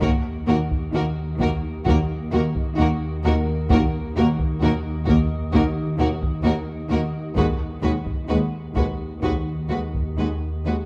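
A dark, spacious scoring-stage sound frames this tense, eerie suspense cue in Eb minor at 65 BPM, where bright, close violins carry the melody over a smoother second violin line, a distant viola section in the background, a very quiet cello riff, a cello section and clear double basses holding a low Eb, a detuned, organ-like chorused drone, and a close, dry taiko ensemble struck with hard sticks, while a warm concert grand with audible action noise adds texture in the background from 3.3 to 7.4 seconds.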